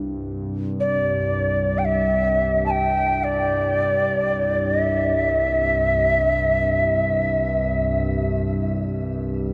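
A huge, wet ambient reverb with a decay of about 4.1 seconds surrounds this short fragment of peaceful, free-time world meditation music in C major pentatonic, tuned slightly flat to A4 = 437 Hz. A warbly, tape-like pad holds a low drone from the opening moment to 9.5 seconds, its detuned sawtooth and triangle tones drifting through chorus and its own reverb with a slow attack, long release and a nostalgic, lo-fi character. At 0.8 seconds a Native American-style cedar flute enters with the melody, moving between D5 and A5, its woody, airy voice carrying gentle vibrato and soft attacks. Shimmer reverb and a diffuse ambient delay give the flute a hollow, distant quality even as it sits up front and slightly louder than the pad. The flute falls silent at 8.0 seconds, leaving the pad's drone to ring on in the calm, spacious room.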